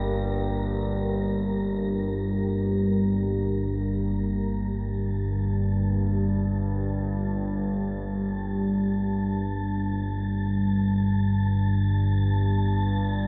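Unsettling and ominous, this dark ambient drone in G minor drifts in free time through a vast, echoing cathedral-like space with a long, wet reverb tail. Up front, an analog drone holds the low end from G1 to G2, its vintage sawtooth and pulse-wave tone slowly evolving and warbling under chorus. Above it, a deep, moody pad sustains chords with a detuned unison sawtooth edge, a sine sub octave, chorus and its own reverb. A faint, breathy wind-like texture of tuned noise sits high between A5 and Bb5, blurred by shimmer reverb; it fades out over the first 4.2 seconds and then fades back in. At that point the harmony moves from G minor to G minor add nine, and the slow-attack layers sustain until the cut at 13.3 seconds in this fragment of a longer piece.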